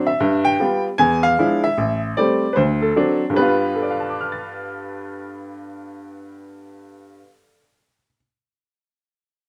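A wet studio reverb surrounds a bright, woody upright piano that sits up front in this short solo jazz passage, cut from a longer piece. At a swinging 152 BPM in 4/4 and G mixolydian, the piano alone spans a range from A1 to A6, moving through G7, E7b9, Am7 and D7 before returning to G7 at 3.4 seconds. The mood is sophisticated and swinging, carried by the piano's brilliant, present, polished tone.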